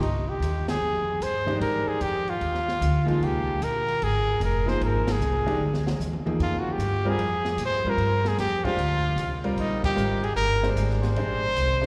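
A forceful, punchy trumpet with light vibrato leads this intense, spiritual piece of swinging modal jazz over woody, thumpy pizzicato upright bass and a dark, smooth drum kit with a high-tuned snare and boomy kick; a brilliant grand piano joins at 1.5 seconds, the band strikes accents at 0.6, 5.0 and 9.8 seconds, and the drums play a fill from 5.6 seconds that leads into the harmony's move from Fm9 to Gm7 at 6.4 seconds, and the whole excerpt rings in a long, wet church reverb.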